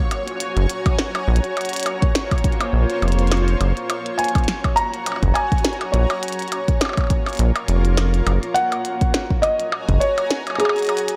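A dry, gritty hardware recording in a digital ambience frames this short IDM excerpt, glitchy and playful at 103 BPM in 4/4 with a light swing on the sixteenths, set in G-flat lydian and tuned slightly sharp. A granular cloud pad opens the piece with blurred, detuned, evolving sustained chords moving between Gbadd9 and Bbm7, its built-in reverb softening the edges. A glitchy drum kit of clicky hats, percussion blips and a tiny snare sits up front almost at once, joined by a deep, tape-tinged electronic kick at 0.9 seconds. The up-front square bass is the loudest part, hollow and bouncy with a plucked, resonant filter, wave-folded tone and a touch of tube saturation, and it drops out with the kick at 10.0 seconds. From 4.2 seconds a felt-muted upright piano carries the melody, intimate and dark under thick felt, its mellow notes trailed by tape echo as the chords settle on a Gb69 before returning to Bbm7.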